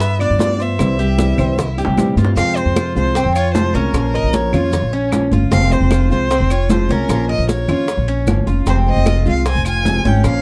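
A straight, danceable Cuban son and guajira groove in 4/4 rides on a growly, thumpy pizzicato upright bass up front. Around it sit fingerpicked nylon-string guitar with fresh-string squeak, metallic double-stringed tres arpeggios and an expressive bowed violin melody full of vibrato and portamento. Ringing congas, tight high-tuned bongos, grainy maracas and woody claves entering at 0.2 seconds fill the background, and a drum fill from 1.6 seconds carries the opening G7 and C into a dark, lightly reverberant passage alternating Fm and Bbm.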